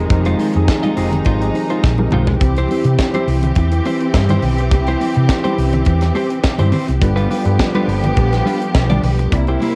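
A home cassette recording with light reverb and small-room ambience carries this sultry, driving disco passage in straight 4/4, cut from a longer piece. Up front sit a tight funk drum kit with a high-tuned snare and a dark, round hollow-body fingered bass, while a clean, compressed picked guitar, a worn, slightly out-of-tune tine electric piano in the background, and a lush, bowed string section with vibrato hold the harmony, moving from Fm7 to C at 2.4 seconds after a drum fill and on to G7 at 7.0 seconds. Very quiet congas played with hard hands on a thin skin add a bright edge beneath.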